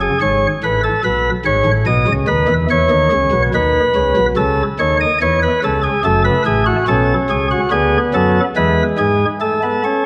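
In a straight 4/4 pulse at 72 BPM, this lively, elegant baroque-style three-part fugue, cut from a longer piece, is carried by a solo chamber organ whose light, bright flute stops speak with a chiff up front, spanning F#1 to D#5 over harmony that moves from F#m through B, E5 and A/C# to settle on A, set in a wet concert hall reverb of 2.3 seconds and tuned to A4 = 435 Hz.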